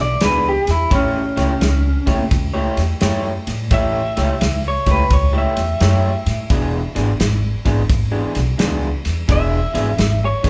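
A gritty lead guitar melody through a small old amp and a woody, plucked upright bass open this rollicking excerpt of an electric blues shuffle in E mixolydian at 86 BPM. A second slightly broken-up, compressed guitar joins with a riff at 0.2 s, alongside an airy, up-front country drum kit with bright ride cymbal, snare and a punchy kick, all swinging the eighth notes. The band plays live in one room with moderate large studio reverb, moving from E7 to A7 at 0.9 s and back to E7 at 6.5 s, with both guitars carrying a lo-fi edge.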